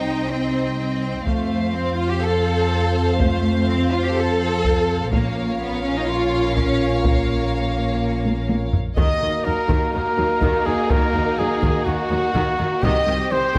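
A taiko ensemble struck with heavy sticks drives this dark, dramatic excerpt of an epic orchestral film score, entering at 1.3 seconds with a compressed, saturated weight and throwing in a fill just before the trumpet arrives. The piece moves at 124 BPM in a straight 4/4 and shifts from C minor through F and B-flat minor to E-flat minor before returning to C minor. Lush bowed violins with soft attacks and expressive vibrato carry the melody, while a second violin line and a viola section with gliding portamento sit in the background. Cellos and a close, even double bass section anchor the low end, and a French horn section holds smooth, warm sustained chords with light vibrato. At 9.0 seconds a clear, classical-style solo trumpet steps up front with stabs, lifting the closing passage, all set in a moderate scoring-stage reverb.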